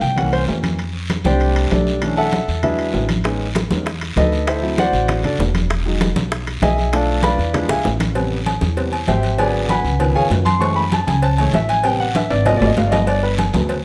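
An up-front concert grand piano opens this sophisticated, danceable Afro-Cuban jazz excerpt at a brisk 195 BPM in 4/4, joined from the start by a woody, growly pizzicato upright bass, ringing congas set in the background, and a raspy guiro. Timbales and agogo bells with a ringing metal-shell tone arrive at 0.2 seconds, and tight, high-tuned bongos and cowbell, close and dry, enter at 3.3 seconds. The piano takes a solo throughout, its natural sound carrying deep bass as it moves over rich harmony such as C7b9, Amaj9#11, Bm7b5, G#13 and Gmaj9#11. A drum fill at 7.7 seconds leads into a second pass through the main section, and another fill arrives at 12.2 seconds near the close. The bass sits dark and up front on steel strings, and a moderate large studio reverb gives the ensemble a sense of space.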